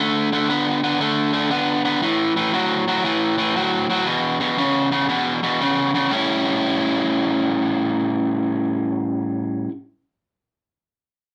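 Blues in A mixolydian at 117 BPM with a swung 4/4 feel, soulful and laid-back, cut from a longer piece. A single electric guitar carries the solo from the start until 9.7 s, its picked, overdriven tone biting yet warm and placed up front, moving through D5, A5 and E5 before settling on A7 at 6.1 s. The playing sits in a studio room with a short, wet ambience, like a band caught live together.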